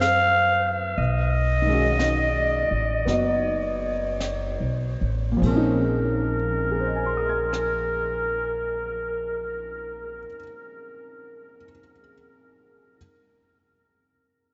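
Swung eighths in a slow 4/4, easing down from 63 to 47 BPM over the first 5.4 seconds, carry this melancholic, smoky jazz ballad fragment in Bb minor, where a raspy, growling clarinet with light vibrato and scooped notes sings the melody up front through a diffuse ambient delay until 10.3 seconds, a clear grand piano with audible action noise and analog chorus accompanies throughout, a woody pizzicato upright bass holds the low end, and a dark, rolled-off brush kit with a high-tuned snare and boomy kick stops at 7.7 seconds, all in a dreamy mix soaked in cathedral reverb.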